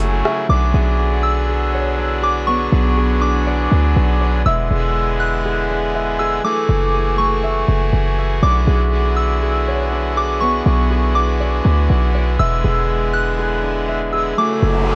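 Hazy and spacious, this half-time hip hop excerpt sets a pure, mellow FM synth bell melody with chorus and tape echo high above brassy, chiffy pipe organ chords on a trumpet stop, ringing thumb-plucked concert harp arpeggios also trailed by tape echo, and a deep, boomy 808-style bass up front, moving through Bm69, E7 and F#m9 on worn, warbling cassette tape with little reverb until an electronic noise sweep arrives at 14.6 seconds.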